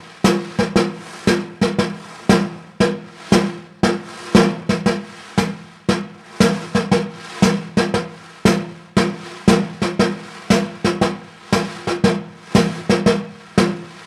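A jazz brush drum kit sits up front for the whole recording, entering at 0.2 seconds and playing through to 14.1 seconds. Brushes move across a medium-tuned snare alongside the hi-hat, giving the acoustic kit the close, intimate sound of a small room. The groove swings its eighth notes at 117 BPM in 4/4, and the mood is relaxed and playful. A light reverb and a dark, warm production soften the edges of the brushed strokes. The passage is cut from a longer piece and stays within a single section from start to finish.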